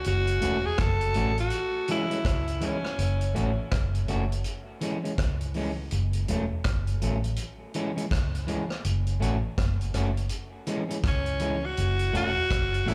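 Heard through a club PA with light room reverb, this short cut of meditative, hypnotic roots reggae swings gently as it sways between F#m and C#m. A round, foam-muted electric bass sits up front with a tight, natural-sounding vintage kit of kick, hi-hat and rim click, while a dark, slightly broken-up fingered electric guitar joins at 0.4 seconds, trailed by dub and slapback echo. A raspy, gritty tenor saxophone with light vibrato and scooped notes leads up front at the start, drops out at 3.7 seconds and returns at 11.1, its echoes hanging in the space.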